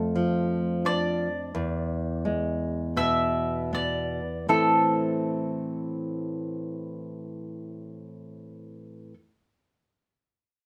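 A solemn, melancholic romantic duo excerpt in a slow, rubato 4/4, where a woody, double-strung picked mandolin carries the melody above an up-front, full-bodied fingerpicked nylon-string guitar with deep classical character, both heard from the start until 9.1 seconds in a small room with moderate reverb, the opening section slowing down as Dm/F moves to E7 before settling on Am at 4.5 seconds.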